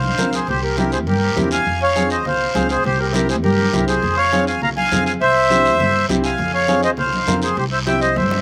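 Fiery and passionate, this short cumbia excerpt from a longer piece drives along at 203 BPM in a straight 4/4, set in F harmonic minor. Up front, a reedy accordion with slow beating carries the melody between G4 and Bb5, touched by a slapback echo. A pizzicato upright bass with a woody, growly steel-string tone holds the low end from C2 to G2. Ringing, medium-tuned congas played with hard hands sit distant in the background with their own slapback echo, while a raspy guiro enters at 0.2 seconds. A clear upright piano with audible action noise and short sustain adds intimate accompaniment from 0.2 to 8.1 seconds, moving through C7, Fm and C in a dry outdoor sound with little reverb.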